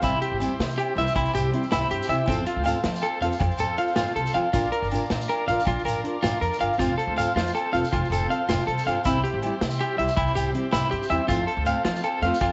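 A swaying 12/8 groove drives this warm, danceable highlife guitar band, built on a vintage drum kit with a punchy kick, medium-tuned snare and hi-hat, a woody, growly pizzicato upright bass, ringing agogo bells and a grainy, distant shekere set in the background. Up front, a slightly broken-up electric guitar picks arpeggios through tremolo and slapback echo, while a full-bodied jumbo steel-string acoustic guitar fingerpicks the accompaniment and a buzzy overdriven combo organ holds sustained chords with lush chorus behind them. The chords move from C through F and Bb and back, and the band sits in an echo-chamber ambience with a softened high end.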